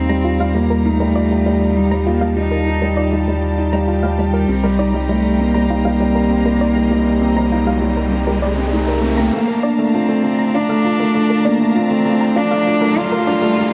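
A felt-muted upright piano riff, dark and intimate with audible action noise, opens this tender, luminous piano-and-strings electronica excerpt at 99 BPM in Bb major, joined from the start by a close, airy sul tasto cello melody, smooth bowed string-section chords and a deep, round sub bass, while a soft, nasal pluck arpeggiates with chorus and tape echo in the background, an electronic riser enters at 7.0 seconds, and from 9.3 seconds a filter sweep on the cello marks a build-up over a Bbmaj7 chord, the whole set in a moderate echo-chamber reverb.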